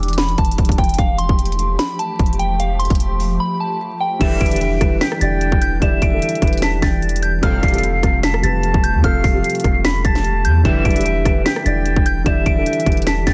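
Overdriven trap drums sit up front with a hard-clipped kick, sharp snare, bright hats, rim clicks and crashes, driving a dark, brooding half-time hip hop groove at 149 BPM in E phrygian, while a deep, sine-like 808-style bass sustains underneath and a soft, warbling FM bell carries the melody over a glassy, ethereal pad in the background. After a short break from 3.4 to 4.2 seconds, an airy, distant flute takes up a second line with delay, a mellow grand piano with short sustain adds accompaniment, and an edgy, nasal sync-sweep polysynth punches brief stabs at 4.2, 7.4 and 10.7 seconds. The chords move between Em7 and Fadd9/E, and the dense, heavily limited mix carries digital ambience and vinyl crackle through this excerpt cut from a longer piece.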